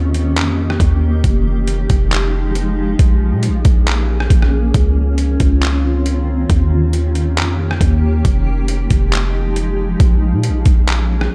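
Atmospheric cloud-rap hip hop at 137 BPM in a half-time 4/4 feel, this blissful, floating excerpt is cut from a longer piece and drifts through Eb7, Fm9, Bbm7 and Dbmaj9 chords. A granular cloud pad holds sustained chords throughout, its blurred, evolving unison tone swelling in on a slow attack, trailing a long release through its built-in reverb, and pumping under sidechain. Up front, a deep, boomy 808-style bass with a sine body and a noise layer strikes with a fast attack and decays mellowly beneath the harmony. From 0.1 seconds a gritty, pitched-down, sampler-style trip hop kit enters with a thumpy kick, hi-hat, handclaps and rim clicks, compressed and overdriven, with the sound of being re-recorded in a large room. A very quiet electronic downlifter runs from the start until 1.2 seconds, and the overall production is dark and warm with little reverb beyond the pad's own.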